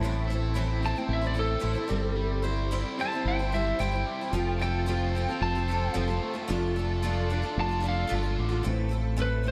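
A twangy, slightly broken-up lead guitar carries the melody through analog delay from 0.9 s in this wistful, dusty rock excerpt at 111 BPM in A minor, moving over Am, C/G, F and Dm/F. Beneath it, a round, punchy electric bass sits up front, a full-bodied jumbo acoustic with fresh strings picks the accompaniment with an ensemble chorus, and a double-tracked, compressed overdriven electric guitar plays a riff until 8.7 s. A very quiet, reedy chamber string section with gut-string tone holds sustained chords from 4.3 s, and the dreamy mix is soaked in plate reverb.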